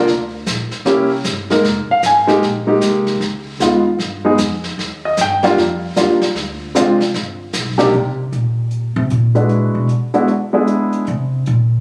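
Captured on a phone in a club-like room with moderate reverb, this short cut from a longer jazz piano trio piece has a sophisticated, relaxed swing. An up-front grand piano with plate reverb solos over rich extended chords until 7.9 seconds, when the woody, thumpy pizzicato upright bass takes its own solo. Throughout, a vintage brush kit of snare and hi-hat adds a mellow, rolled-off pulse.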